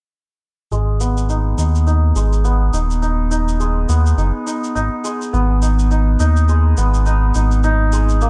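Organic downtempo excerpt in G# minor at 104 BPM with a swung sixteenth-note feel, mystical and earthy, where an up-front hammered santur plays shimmering, ringing arpeggios through a low-pass filter and tape echo over a smooth, mellow sawtooth-and-triangle synth bass with ring modulation and vibrato, both parts carrying filter sweeps from 0.7 to 8.3 seconds, a faint, layered electronic shaker beneath, a dry mix, and chords moving from G#m to B/G# before dropping out at 7.6 seconds.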